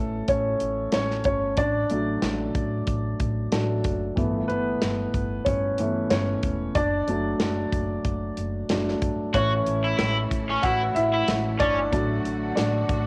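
A cassette-tape home recording with light reverb and small-room ambience frames this uplifting, hopeful piano-driven pop passage at 93 BPM, with a gentle sixteenth-note swing, cut from a longer piece. A warm, open grand piano leads up front over a woody, growly pizzicato upright bass and a modern studio drum kit with a punchy kick, medium-tuned snare and hi-hat, moving through chords built around A, D and G. At 9.3 seconds a lush bowed string section enters, distant in the background, while a bright, overdriven, double-tracked electric guitar plays a picked riff until 11.8 seconds.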